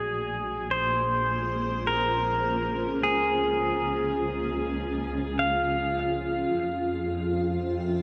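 This ambient excerpt, cut from a longer piece, feels luminous and serene, moving slowly in three-four time over a wash of huge reverb. Up front, a clean, twangy electric pedal steel guitar carries the melody with fingerpicked slide lines and volume swells, its notes trailing into a diffuse ambient delay before it falls silent at 6.5 seconds. Beneath it, a cloudy granular pad fades in across the full 8.0 seconds, its detuned, blurred sustained chords slowly evolving with a moving notch and long release. Lower still, a muted double bass section plays con sordino, its bowed ensemble tone dark, veiled and distant, with vibrato. The harmony drifts from Bbm7 to Db, holding the whole passage suspended in a soft, glowing haze.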